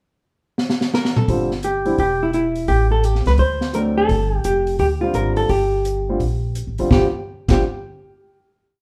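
A drum fill at 0.6 seconds opens this short, moody small-group swing and bop piece, a late-night jazz miniature in G minor that swings along at 171 BPM in 4/4. The open kit sounds dark and smooth, keeping time with sticks on the hi-hat beneath dark cymbals, a high-tuned snare and a boomy kick. A clean, fingered hollow-body electric guitar carries the melody, built from short motif-based call phrases and set in plate reverb. At 1.3 seconds the upright bass enters with a woody, pizzicato two-feel on steel strings, and the mellow concert grand adds syncopated comping in quartal voicings with deep low notes. The harmony moves from G7sus4 through Em, A7 and D7 to a lingering Gm11 before settling on a final G7sus4. The group is heard from further back in a moderately reverberant studio, giving the close, shadowy performance a sense of space.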